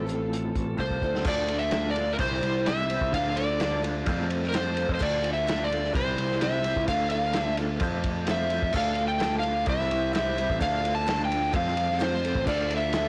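Dusty and wistful, this short folk rock and heartland rock excerpt moves at a steady, straight pace in 4/4, cycling through D minor, C and F chords after opening on F over A. An overdriven slide guitar carries the melody up front, its dark, gritty tone trailed by analog delay. Beneath it, a growly picked electric bass sits forward in the mix, while a bright, shimmering twelve-string acoustic guitar and an electric guitar through a small old amp, slightly broken-up and pulsing with tremolo as it plays a riff, stay in the background. A vintage drum kit, muffled with dark cymbals and a tight kick, enters at 0.1 seconds and plays a fill from 0.8 to 1.3 seconds before the main section settles in, its snare softly clipped. The whole recording sounds blown-out and overdriven, set in a small room with light reverb.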